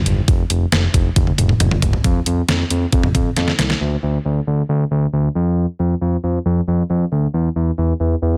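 A straight 4/4 pulse at 136 BPM drives this wistful yet upbeat synth-pop fragment, cut from a longer piece and tuned slightly flat to A4 = 439 Hz. A detuned 8-bit digital drum machine sits up front, with a thumpy kick, a medium-tuned snare, hi-hat and toms in a sampler-style, overdriven sound, breaking into fills at 1.2 and 3.4 seconds. The drums stop at 3.8 seconds, leaving a smooth synth bass to carry on alone through the final stretch. That bass also sits up front, low in range, blending sawtooth, square and triangle waves with a touch of ring modulation, its fast attack giving way to sustained, mellow tones. A digital ambience surrounds both parts, and the dense, heavily limited modern master keeps the sound full and forward.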